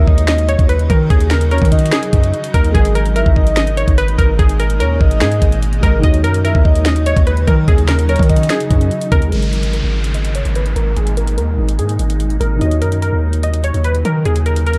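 Menacing, melancholic trap at 146 BPM in a half-time feel, this excerpt pairs a crystalline, chorused wavetable pluck melody with a round octave-layered synth lead that drops out at 9.3 seconds, over a felt-muted upright piano in the background, a blurred granular pad with built-in reverb, a deep sine 808 bass and an up-front kit of knocking kick, sharp snare, metallic hats and finger snaps, as a filter sweep and a brief downlifter mark the closing passage.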